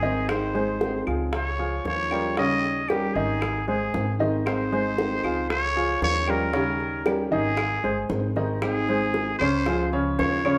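From the opening second, a muted trumpet carries the melody up front over a relaxed Cuban son and guajira groove in Ab major, moving at 115 BPM in a straight 4/4. Its straight-muted tone is nasal and raspy, with a growling, jazz-style grit, light vibrato and a smooth top end. Beneath it, a worn baby grand piano plays short-sustained arpeggios, while a dark-toned classical nylon-string guitar is fingerpicked, with audible finger squeak. A thumpy pizzicato upright bass on steel strings anchors the low end, and tight, high-tuned bongos played with soft hands sit in the background. Dry, woody claves join at 0.3 s, the chords cycle through Ab, Db and Eb7, and a new section begins at 8.6 s. The band plays live in one room, bathed in a generous large-studio reverb that gives this short cut from a longer piece its warm, unhurried feel.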